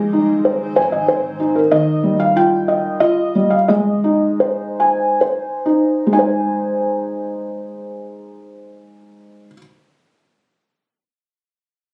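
In a rubato 3/4 that drifts between 61 and 97 BPM and slows from 1.7 to 6.1 seconds, this tender, innocent lullaby excerpt in Ab major sets a felt-muted upright piano, dark and intimate with audible action noise and up front, carrying the melody until 9.6 seconds over a cloudy granular pad of sustained chords that ends at 1.7 seconds, all caught on a phone in a room with club reverb.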